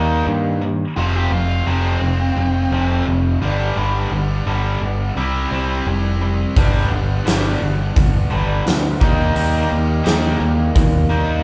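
A huge arena drum kit with a fat snare and boomy kick enters at 6.6 s in this sunny, confident classic rock excerpt at 86 BPM, joining a growling, overdriven picked bass up front and two bright, picked overdriven electric guitars riffing together, one touched with spring reverb, while a dark octave-fuzz lead guitar adds a brief second line from 1.0 to 3.0 s, the band sounding live in one large studio room with moderate reverb.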